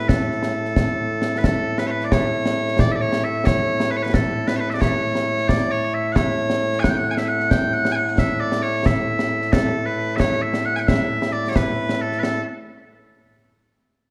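Piercing, continuous solo bagpipes carry the melody up front with a slapback echo in this stirring, ceremonial excerpt of Scottish pipe music in 6/8 at 89 BPM in A major. Concert snare and bass drum join at 0.1 s with a live-room acoustic sound and bright cymbals, all set in a moderate scoring-stage reverb with a dark production.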